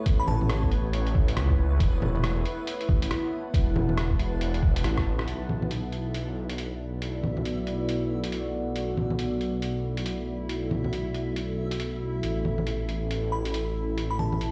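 A deep, dark ambient pad with chorus and sidechain pumping opens this ghostly, melancholic future garage excerpt in B minor, alongside a dreamy reversed granular texture in the background and a menacing, saturated detuned saw bass that sits up front. A glassy FM bell with analog delay glints briefly at 0.2 seconds and returns at 13.3 seconds. Muffled, pitched-down lo-fi drums with bongos, hi-hat and rim click carry the swung 138 BPM groove under a thumpy kick that drops out at 5.0 seconds in the middle of a short fill, all heard through a cassette-tinged stone room reverb.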